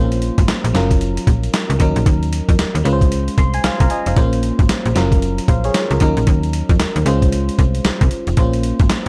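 An FM electric piano and a slap-like FM bass open this short cut from a longer new jack swing and R&B track, with a boom bap sampler-style drum kit joining at 0.1 seconds for a bouncy, slick groove with a swung sixteenth-note feel. The electric piano carries the accompaniment with a glassy, bell-like attack, a warbling vintage character, a noise layer and a chorus effect, and it breaks into a fill between 3.1 and 4.2 seconds. Underneath, the bass is snappy and digital, with a fast, metallic attack that then decays. The drums sound sampled, compressed and pitched down, with a gritty edge, a thumpy kick, a medium-tuned snare and hi-hat, and a sense of having been re-recorded in a large room. The harmony cycles twice through Bbmadd9, Gbmaj7, Ebm7 and Dbmaj7 before landing back on Bbmadd9. The production is dark and warm, with little reverb and all three parts placed up front.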